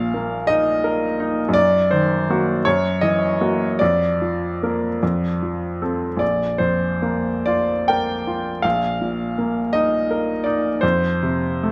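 A bright baby grand piano opens alone on an Eb5/Bb chord, setting a nostalgic, serene romantic nocturne in Bb major and 12/8, moving at a slow, rubato pulse of roughly 45-57 beats per minute counted in dotted quarters. The solo piano spans Bb1 to G5, its brilliant, natural tone sitting up front with long sustain, captured by close, detailed microphones in a moderate recital hall reverb. The harmony drifts through darker colours, Ebm/Gb at 1.6 seconds and then Gb7, before settling onto Bb/F and F. It rests on Bb5 at 6.2 seconds, returns to Eb5/Bb, and closes on F5 near 10.8 seconds. This brief passage, cut from a longer piece, lasts just under 12 seconds.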